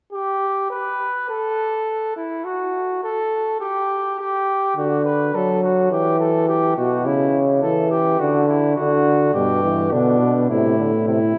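Classical imitative canzona for brass ensemble in 4/4 at 104 BPM, joyful and elegant, heard as a short passage cut from a longer piece. A mellow, distant flugelhorn opens alone at 0.1 seconds, the warm, soft-attacked euphonium joins at 4.8 seconds as chords move through D, Em, A/C#, D, G and Am, and a roomy bass trombone adds a low line from 9.4 seconds. A long church reverb and a dark production with the highs rolled off wrap the ensemble in a glowing, resonant space.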